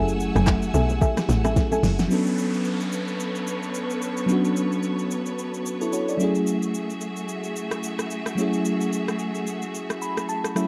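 A dark, lightly reverberant production opens this late-night, deep amapiano excerpt at 110 BPM in B minor, with a swung sixteenth-note feel. It begins on a drop where a tight, punchy log drum bass, deep nasal chord stabs with chorus and tape echo, and soft-handed bongos and congas all sound briefly before a drum fill from 1.6 to 2.1 seconds. Through the whole passage a sparkling, bell-like FM electric piano carries the accompaniment with chorus and tremolo, while a lush bowed string section holds sustained chords with vibrato and a sidechain pumping effect. The smooth R&B drum kit sits up front, its overdriven sound built from a soft kick, fat snare, metallic hats, handclaps, rim click and shaker. From 2.1 seconds the harmony moves from F#m9 to Bm9 under a faint electronic downlifter, returning to F#m9 before the electric piano plays a closing fill from 9.7 seconds.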